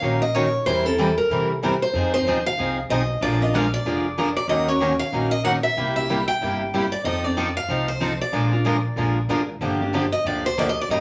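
Acoustic string swing in the jazz manouche style, bittersweet and swinging, this excerpt from a longer piece sets an up-front parlour steel-string guitar on the melody, its bright, picked tone carrying audible finger squeak. A fresh-stringed dreadnought steel-string guitar and a boxy swing-style guitar in the background supply accompaniment, while a woody, thumpy upright bass on gut strings plays pizzicato beneath a chord cycle that opens on Ebm7. The sound sits in a short, wet studio reverb with vinyl crackle, and at 9.6 s a steel-string guitar takes a solo as the harmony moves to Gm7.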